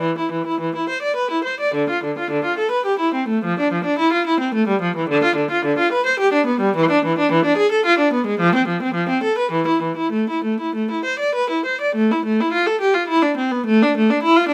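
Solemn and grave, this short passage, cut from a longer piece, is a baroque-style suite movement for unaccompanied viola in 3/4, moving with a flexible rubato at roughly 92-112 BPM. A single bowed viola plays alone from 0.0 to 14.5 s, ranging from D3 up to D5 with a rich, smooth and even tone coloured by vibrato. The instrument sits close and up front. The music settles into A minor from 5.1 s, and a new section begins at 12.0 s for the final moments. A moderate studio reverb gives the solo line a modest sense of space around its intimate presence.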